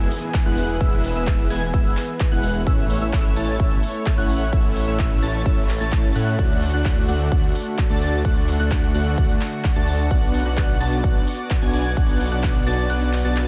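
Uplifting and euphoric, this excerpt of festival progressive house in A major runs at 129 BPM in a straight 4/4, its punchy, up-front kick pushing beneath big-room handclaps and hi-hat while a thick, menacing detuned saw bass, huge supersaw chords with analog delay, a catchy plucky lead arpeggiating high with vibrato and analog chorus, and an airy, bright pad in the background all pump under sidechain. A barely audible downlifter sounds until 2.7 s as the chords move from E through A and D to B minor, over light reverb. The kick drops out at 12.9 s.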